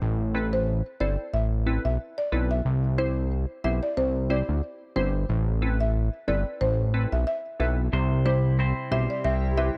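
A dark, warm digital ambience frames this sunny, summery dancehall piece at 91 BPM in C major, swung on the sixteenths and cut from a longer track. A fat, detuned sawtooth bass sits up front beneath a glassy, crystalline wavetable pluck with chorus, while a buzzing, woody marimba carries the melody through tape echo over chords moving between Amadd9 and C. At 7.9 seconds a bright, clean semi-hollow electric guitar adds echoing arpeggios, and a cloudy granular pad drifts in the background from 9.1 seconds.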